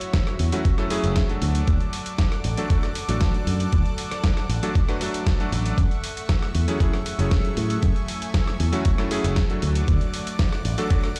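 A gritty, thumpy electronic kick sits up front in this cosmic, groovy nu-disco excerpt at 117 BPM in 4/4 with a straight feel. It is overdriven and compressed, with a small-room character. A picked electric bass runs through an envelope filter with a punchy tone from F#1 to A2, entering at 0.4 seconds. A dusty soul sampler-style kit shares the kick's overdrive and adds hi-hat, rim click and a medium-tuned snare. A bright, clangy vintage electric grand piano carries the accompaniment with delay and sidechain pumping. Alongside it, a lush, airy unison pad of detuned sawtooth and square waves with a noise layer holds soft-attack chords under chorus, also pumping with the sidechain. The harmony moves between F#m7 and D in F# minor, and the music sounds as if played on a big sound system in a bare stone room with light reverb.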